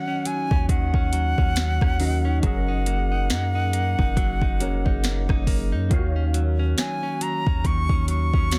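An up-front, overdriven drum kit with a soft kick, sharp snare and hats enters at 0.3 s to anchor this sensual, late-night contemporary R&B piece at 69 BPM in Eb minor, beneath a close-miked silver concert flute melody with vibrato and tape echo, a worn, slightly out-of-tune tine electric piano with ensemble chorus, clean picked guitar arpeggios recorded direct, and a deep, mellow sine 808-style bass that joins at 0.5 s, in a dry, dense, heavily limited mix.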